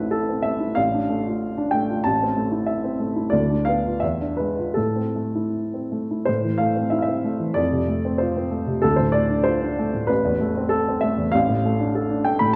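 A warm, woody upright piano carries this brief classical excerpt alone, a romantic character piece in A minor that sounds bittersweet and brooding. Its tone is polished and present, sitting up front with a short sustain, and it ranges from A1 up to B5. The tempo moves between 76 and 99 BPM in 2/4, with a rubato feel that lets the phrasing breathe, and the instrument is tuned slightly low at A4 = 438 Hz. The harmony circles A minor through D minor, a diminished chord and a tense E7b9 before the second statement of the opening section at 6.3 seconds turns toward F and Dm7. A wet recital hall reverb and a dark production surround the piano, and the passage is cut from a longer piece, ending at 12.6 seconds.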